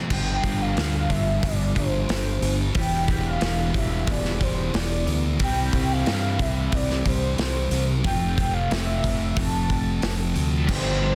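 A dense, heavily limited modern master set in a small room gives this brief cut from a longer shoegaze and dream pop rock piece a crowded, pressing sound, dreamy and wistful at a straight 91 BPM in 4/4 and G mixolydian. A loose, acoustic indie drum kit sits up front with a pumping room sound, dark cymbals, a medium-tuned snare and a tight kick, while a growling, punchy fingered electric bass, overdriven and blending direct and amped tones, is the loudest part. Three picked guitars build the riff wall: a thick, dark fuzz guitar drenched in distortion and lush chorus, a compressed overdriven electric guitar trailed by reverse reverb, and a very quiet, double-tracked crunchy guitar that surfaces only briefly at the start and again from 10.7 s. Above them, a warm, velvety synth lead blending detuned sawtooth and triangle tones carries the melody high in its register, its sustained, fast-attack notes shimmering with vibrato, chorus and digital delay. 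The harmony moves through G5, Em7, C and Fmaj7, with the drums dropping out at 10.8 s as the guitars, bass and lead ring on to the cut.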